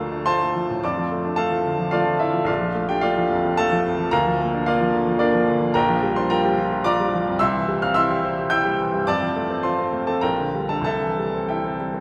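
In a flexible, rubato triple metre, this lyrical romantic character piece, cut from a longer work, features a clear, intimate baby grand piano placed up front, its audible action noise and long sustain ringing from Bb1 to G6 into a wet cathedral reverb as the harmony moves from Dm through Bbmaj7 and Gm7/Bb to C and F.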